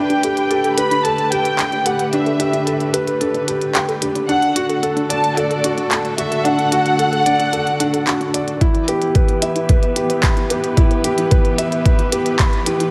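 A lush hall reverb surrounds this hypnotic, cinematic piano-and-strings electronica piece in E minor at 111 BPM. An intimate, felt-muted upright piano with audible action noise plays a riff up front beside a dark, woody violin section carrying the melody, both touched by tape echo, while rich symphonic strings hold low-pass filtered chords, a very quiet round pluck runs arpeggios, and a minimal electronic kit adds clicky hats and handclaps. The violins drop out at 8.3 seconds, and from 8.6 seconds a build-up brings a filter sweep on the strings and a muffled, thumpy, compressed kick that sits up front.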